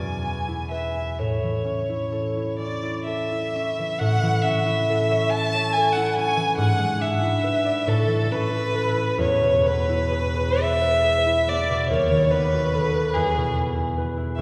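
Tender and warm, this romantic classical duo passage, cut from a longer piece, sets a single bowed violin singing a smooth, even melody with vibrato over the mellow, ringing, fingerpicked accompaniment of a concert harp, both up front and playing together throughout its 14.4 seconds in a freely rubato 6/8, wrapped in a wet church reverb that places the listener further back in the room.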